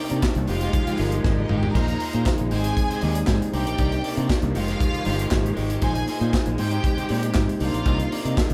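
A driving, sultry disco groove at 118 BPM in straight 4/4 sets punchy modern studio drums with bright cymbals, handclaps and a fill at 1.2 seconds under an up-front overdriven fingered bass, while a mellow tine electric piano, a slightly broken-up picked electric guitar in the background, and two lush, bowed string sections, one carrying a second line and the other sustained chords, move through Fm9, Bb9sus4, Abmaj7 and Cm9 in a lightly reverberant room, heard as a short cut from a longer piece.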